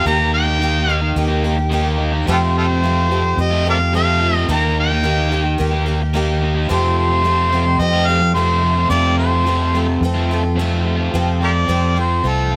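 An up-front harmonica with light vibrato, tongue slaps and scooped notes carries the melody through a slapback echo in this open-road, jangly rock excerpt, stepping into a jazz-style solo at 11.1 seconds. Beneath it, a shimmering, octave-doubled twelve-string acoustic guitar with audible finger squeak jangles alongside a crunchy, double-tracked overdriven electric guitar riff, while a dark, round fingered bass sits prominently in the mix. The chords shift between Eb and Fadd9 before settling on F, all framed by light studio reverb.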